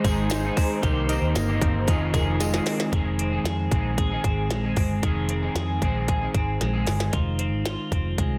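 Up front, a bright, twangy twelve-string electric guitar picks delayed arpeggios over glitchy, overdriven electronic drums with clicky hats, a round, foam-muted bass, a dark, slightly broken-up guitar through a small old amp, warbling detuned synth keys that drop out at 3.0 seconds, and a jingly tambourine in the background, giving this restless, bittersweet jangly indie pop excerpt its nostalgic pull across Ab, Cm7 and Fm7 chords, with drum fills at 2.4 and 6.6 seconds.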